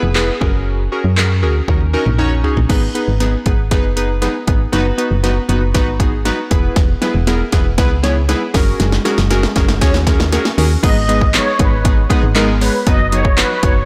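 A straight 4/4 pulse at 118 BPM drives this driving, bittersweet dance-pop excerpt, cut from a longer piece, with a layered electronic pop drum kit entering at 0.2 s: a punchy kick, fat snare, metallic hi-hats, handclaps, toms and crash cymbal, overdriven and re-recorded in a small room and set up front. A round, dark FM bass with fast, decaying notes pumps through sidechain, while analog keys mixing square, sawtooth and triangle waves bring a detuned, wave-folded and bright chorus-treated tone with a filter sweep, also pumping and sitting forward. A drum fill leads into a build-up from 2.7 s, as the harmony moves from F#add9 and D#m7 through B/F# and E. The drop lands at 10.8 s on G#m, where a filtered supersaw swell joins with an airy, evolving unison lead, soft in attack and sustained, with a noise layer and a moving notch. The whole recording is blown-out and overdriven, with light reverb and a digital ambience.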